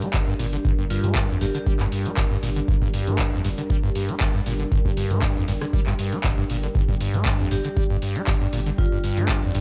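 The recording sits in a digital ambience, and the drums carry a tape-softened grit from being re-recorded in a small room. This driving, raw acid house passage, cut from a longer piece, moves in a straight 4/4 over a single minor chord. A deep electronic kick anchors the groove, while a booming analog drum machine adds handclaps, metallic hi-hats and rim clicks. The central riff comes from a squelchy, resonant sawtooth acid bass with a fast filter pluck, colored by lush chorus, cassette tape character, digital delay and sidechain pumping. Beneath it, a thick sine sub bass with tube saturation sits in the background and pumps along, and a moody, detuned analog pad holds dark, full-bodied sustained chords with chorus and its own pumping. A bright, ringing vibraphone with tape echo and medium motor vibrato drifts in the background, briefly at 0.9 seconds and again from 7.5 seconds.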